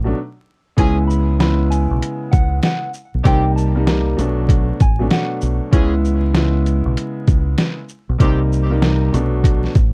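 A compressed, pitched-down sampler-style drum kit drives this dark, gritty boom-bap hip-hop fragment, its thumpy kick, medium-tuned snare, hi-hat and shaker sitting up front with a swung sixteenth-note feel. Beneath it, a round, deep dub fingered electric bass with tube saturation holds the low end. A woody upright piano with audible action noise and long sustain supplies intimate, vintage accompaniment, filtered and colored by cassette tape. After a short break, a clean, fingered electric guitar carries a brief high melody with pitch drift from 0.8 to 5.4 seconds, while a clear horn section with light vibrato and a smooth top adds filtered stabs trailed by delay. The harmony moves among the minor seventh chords Bm7, C#m7 and Cm7, and the dry mix is steeped in worn, warbling old tape and vinyl crackle.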